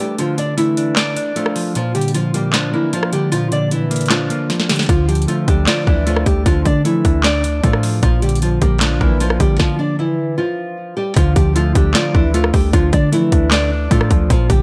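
Eerie and hard-hitting, this excerpt of trap-flavored hip hop moves at 153 BPM with a half-time feel in D minor, shifting between Dm and Bb. A small, fingerpicked nylon-string guitar carries the melody through tape echo over a dark, clean electric guitar, while an overdriven electronic trap kit sits up front with its hard-clipped kick, sharp snare, metallic hats, handclaps and rim clicks. After a drum fill, a deep, boomy sine 808 bass arrives at 4.9 seconds, and a stop from 9.6 to 11.2 seconds leads into a new section, with the recording kept dry.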